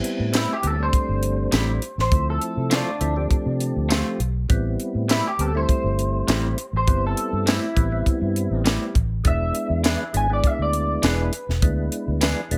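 Lightly reverberant, with a dry, polished funk kit up front, this smoky, soulful straight-eighth soul blues moves at 101 BPM in A minor. Its high-tuned snare, tight kick, hi-hat and tambourine sit alongside a dark, foam-muted vintage fingered bass that enters at 0.2 seconds, while a mellow tonewheel organ adds key click, third-harmonic percussion, light overdrive, chorus vibrato, plate reverb and a slow rotary speaker. Two bright, slightly broken-up, twangy guitars through a small old amp join: one plays picked stabs with slapback echo from 0.3 seconds, and the other, compressed with analog chorus and plate reverb, carries the melody over Am7, Dm7 and E7 chords in this short cut from a longer piece.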